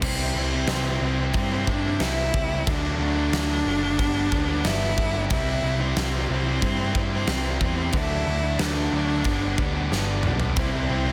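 A brooding, cathartic alternative rock excerpt at 91 BPM opens with a clear, focused bowed cello melody with vibrato over a punchy, up-front rock drum kit with a fat snare, a round, amped picked electric bass, and two overdriven electric guitar riffs set back in the mix, one bright and one warm, cycling through C, D and G chords in a large studio reverb, until a drum fill at 9.9 s leads to a faint, shimmering vintage string-machine violin chord entering at 10.6 s.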